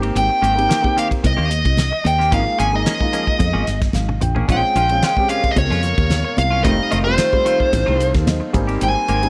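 A large studio's moderate reverb surrounds this driving, intense electric jazz fusion excerpt. A damped 70s kit with a fat snare and tight kick plays alongside a growly fretless bass that sits up front, beneath an overdriven, smooth lead guitar that carries the melody from 0.2 s, while a mellow grand piano with audible action noise supplies accompaniment and fills. A bright, compressed semi-hollow guitar adds clean stabs through chorus and delay, high-tuned congas played with hard hands stay in the background, the drums add a fill around 3.9 s, and from 5.1 s a breathy, soft pad holds slow-attack sustained chords.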